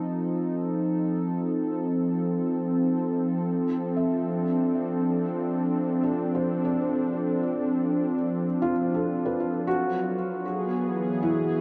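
An up-front analog pad of smooth, detuned sawtooth tones with a soft attack, long release and chorus holds sustained chords over F7, Dm7 and Gbm11 in this reflective, melancholic ambient passage in 3/4, cut from a longer piece. At 4.0 s a felt-muted upright piano enters with mellow, intimate arpeggios carried on delay, sitting quieter than the pad. A huge, wet reverb and a dark, warm production wrap the whole sound in a long, hazy tail.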